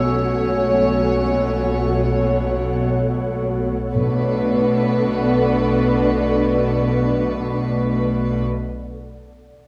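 Uneasy and ominous, this cinematic suspense cue, cut from a longer piece, hovers in free time in B minor, with a distant, floating violin section carrying the melody above a second, darker violin line in the background, a woody viola section, a warm cello section and a close, pure double bass section, all bowed sul tasto. An ethereal, airy pad with ensemble chorus and its own reverb holds mellow sustained chords, while a metallic, ringing vibraphone with slow motor vibrato sounds in the background until 4.0 seconds, when very quiet, round timpani enter. The harmony moves from F#m/B to Bm7 at 3.9 seconds, and the whole ensemble sits in a wet scoring-stage reverb.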